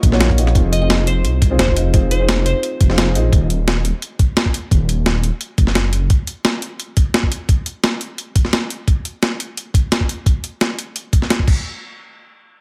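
A straight 4/4 groove drives this rolling, soulful slice of liquid drum and bass, with a thumpy electronic kick and a gritty, compressed breakbeat kit of crash, hi-hat and medium-tuned snare sitting up front through the whole stretch. Underneath, a deep, rumbling detuned saw bass with a saturated, beating edge holds the low end until 6.1 seconds, when the chords drop out. A dark, mellow concert grand piano with audible action noise and a boxy, intimate character plays accompaniment through digital delay for the opening few seconds. A lush, very quiet unison pad touches the chords only at the start, and a glassy, crystalline wavetable pluck carries a short melody, shimmering with chorus, delay and a filter sweep. The harmony moves through minor seventh chords before settling on a minor chord, and the whole is dry, with little reverb.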